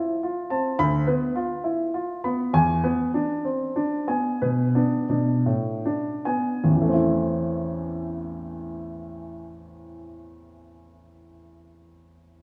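In a free, rubato 4/4 that slows through its opening 6.6 seconds, this solemn, grave baroque-style classical suite movement unfolds for solo baby grand piano, cut from a longer piece. The piano is warm, natural and up front, spanning a deep bass to the upper register as its harmony moves from F through Bdim/D and a rootless E7 to A minor, where a second section begins. A wet recital hall reverb with a long 1.8-second tail surrounds the instrument.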